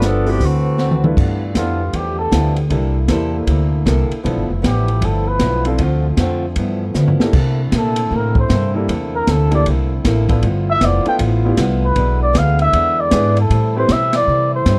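A veiled, cup-muted trumpet carries a mellow solo from 1.6 seconds in this joyful, brassy big band swing excerpt at 156 BPM in G mixolydian, after a warm saxophone section briefly states the melody and a drum fill at 0.8 seconds leads into the solo. Behind it, a bright trombone section sustains chords with vibrato, while a clear grand piano and a boxy, picked archtop guitar comp through G13, C13, Dm7, E7 and Am7 harmonies. A woody pizzicato upright bass anchors the low end, and the drum kit brings dark cymbals, a high-tuned snare, a boomy kick and another fill around 7.0 seconds, all captured in a dry, close 1970s-style studio sound.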